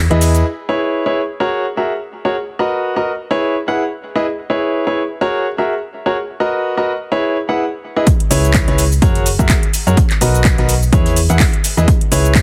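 Piano house at 126 BPM in C# dorian with a soulful, energetic swing, this cut from a longer piece rides a bright, brilliant grand piano riff with tape echo, low-pass filtering and sidechain pumping over a C#m7, F#add9, Bmaj7, E progression. After a brief opening break in which the bass and both drum kits sound together, the piano carries alone until the drop at 8.1 seconds brings in a punchy overdriven electronic kick, metallic-hatted house drums with cabasa, handclaps and hi-hat, and a very quiet vintage kit of hi-hat and snare, with a round FM bass with tube saturation following at 8.3 seconds, all heard through light reverb and a heavily compressed radio sound.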